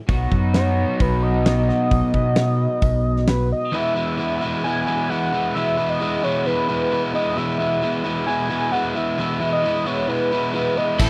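Upbeat and jangly, this dry, close-sounding indie rock excerpt opens with two bright overdriven electric guitar riffs (one with analog chorus), amped electric bass, and a big acoustic rock kit with a fat snare and punchy kick. Over them a gritty, screaming, guitar-like synth lead with chorus and vibrato carries the melody. Around 3.4 seconds the drums and bass drop away, followed by the chorused guitar at 3.7 seconds, leaving the main guitar riff and the synth lead over very quiet, lightly overdriven tonewheel organ chords with key click and a slow rotary speaker, before the full band and a jingly background tambourine return at 11.0 seconds.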